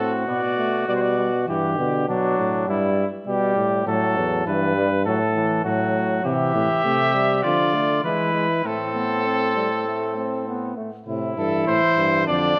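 Solemn and driving, this classical brass canzona moves at 100 BPM in a straight 4/4, settling into A minor from 6.3 seconds in a short passage cut from a longer piece. The trumpet carries the melody with light vibrato and a vintage, up-front tone, sounding briefly at the opening and then returning at 6.3 seconds to lead through to the end. Beneath it, the flugelhorn spins a second line in its own clear, vintage voice, while the trombone supplies accompaniment from a more distant, roomy position. The euphonium anchors the bass with a dark, present sound. The harmony drifts through G and E minor colours before landing on A minor, moving through D minor and E and returning home. A moderate recital hall reverb gives the ensemble a natural sense of space.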